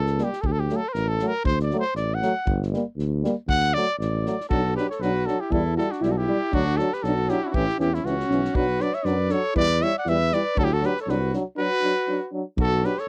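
A breathy, intimate trumpet opens this fiery, restless Balkan brass band excerpt with a vibrato-laden jazz-style solo from 0.0 s over a mellow, up-front tuba bass, a small-room soul drum kit with a tight kick and rolled-off top, a distant euphonium and a vintage-toned French horn in the background. The music moves at 118 BPM in a swung 2/4, and settles into B minor at 4.5 s, where a clear, close-miked alto saxophone enters with a classical-style second line. The sound is dry and close, like a 1970s studio recording.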